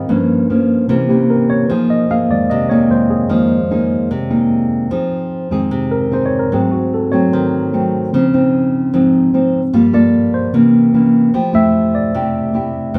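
Set in a straight 4/4 at 149 BPM, this bossa nova fragment in F minor moves along with a smooth, wistful ease. A thumb-plucked nylon-string guitar carries the accompaniment throughout its 13 seconds, its fresh strings giving a full-bodied, deep classical tone. Alongside it, a tine electric piano takes the solo from start to finish, sounding worn and slightly out of tune, lightly overdriven through a combo amp. Both instruments sit up front, while a wet small room gives the whole a sense of being heard from further back in the space. The harmony drifts through rich extended chords, from Gm7b5 and C7b9 into Fm7, later passing through Ab7b9 and Dbmaj9 before resolving onto Fmaj9 near 11.3 seconds. The passage is cut from a longer piece.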